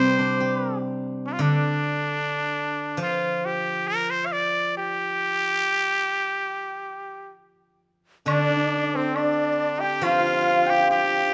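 In a free rubato 4/4, this wistful, graceful passage of Chinese traditional chamber music puts a nasal, raspy straight-muted trumpet up front, singing a jazz-inflected melody with scooped notes and light vibrato over the silvery, fingerpicked ringing of a steel-string zither, until at 8.3 s a shimmering hammered dulcimer and an airy, buzzing bamboo dizi join as second lines while a woodblock sounds in the background until 10.2 s, captured by close, detailed microphones in light reverb.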